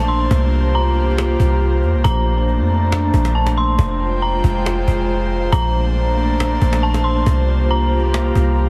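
A warbling, eerie synth bell carries the melody through chorus and tape echo, floating above an up-front breathy pad that holds sustained chords over a deep, boomy 808-style bass in this blissful, half-time cloud-rap fragment cut from a longer piece. Soft-handed, woody cajon enters at 0.1 seconds, while a very quiet wind-like noise texture drifts through the mix as the harmony moves from C7sus4 through Bbmaj9 and Fmadd9. The whole sound is heavily compressed and radio-like, marked by lossy digital artefacts.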